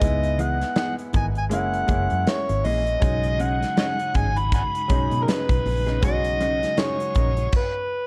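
Lush 1970s-style soul at 80 BPM in B major with a warm, smooth feel, where a gritty, overdriven harmonica leads up front with jazzy scooped notes and tongue slaps over clear, intimate grand piano, a round, punchy foam-muted electric bass, a tight acoustic drum kit with crash, hi-hat, kick and snare, a dark, compressed electric guitar riff in the background from 0.4 seconds, and a piping tonewheel organ with slow rotary speaker and key click adding sustained chords from 3.0 seconds, all cut from a longer piece with dark, light studio reverb.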